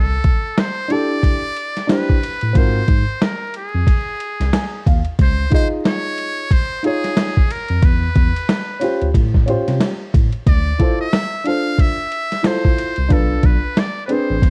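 Jazz-hop at 91 BPM with a swung sixteenth feel and a relaxed, cool mood, where a buzzy, thin metal-muted trumpet with light vibrato carries the melody over a worn, slightly out-of-tune tine electric piano playing the bass line, gritty, pitched-down boom bap drums with a thumpy kick sitting up front, and a dark, boxy baby grand with audible action noise that enters at 0.9 seconds and adds a fill at 4.2 seconds, all in a dry, dark production dusted with vinyl crackle.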